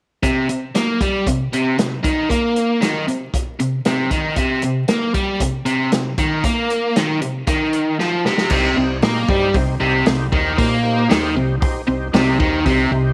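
A straight 4/4 groove at 116 BPM drives this gritty, smoky blues rock and southern rock excerpt in C minor, where a biting, double-tracked overdriven guitar riff and a punchy, rolled-off vintage drum kit open together at 0.2 seconds, a drum fill at 8.0 seconds ushers in a growling fingered bass and a thick, key-clicking tonewheel organ with slow rotary speaker and chorus vibrato in the background at 8.5 seconds, all over light reverb, studio ambience and vinyl crackle.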